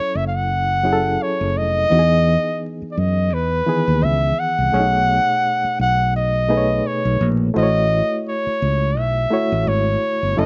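R&B and neo-soul in an introspective, sultry mood at 85 BPM with a lightly swung sixteenth feel, this brief cut from a longer piece puts a jazz-style solo flugelhorn, warm with light vibrato and scooped notes, up front over a reedy, clean electric piano pulsing with fast tremolo and a growly, bright fingered electric bass, moving through F#m7, Emaj7, B13 and A6 in a dry, open-air sound dusted with vinyl crackle and capped at 7.6 kHz.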